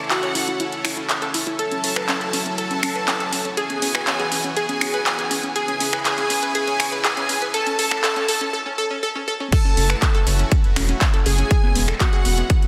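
Dreamy and emotional, this progressive house excerpt at 121 BPM in F# minor builds over a lush, detuned supersaw pad, a round analog pluck arpeggio with chorus, dub echo and a filter sweep, a catchy plucky unison lead with digital delay, and a rich, focused chamber violin section carrying a second line with vibrato, all under sidechain pumping on the pad, pluck and violins. An overdriven house drum kit re-recorded in a large room, with crash, snaps, handclaps, hi-hat and toms, drives the build-up, continuing through a break from 8.5 seconds and a fill. At 9.5 seconds the drop lands with a punchy overdriven electronic kick and, from 9.8 seconds, a deep, nasal analog bass, all wrapped in a lush hall reverb and a dense, heavily limited master.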